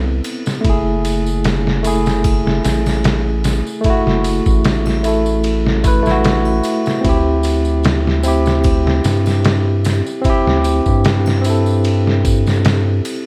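A barky, bright tine electric piano with harmonic tremolo, 12-bit sampler grit and tape echo sits up front over a round, deep analog bass and a muffled, pitched-down sampler drum kit with a thumpy kick, while triangle and tambourine sit quietly in the background, moving from Am through F#m7 to D7sus4 in this cinematic, melancholic trip hop fragment, which is lightly swung, dry and dusted with vinyl crackle.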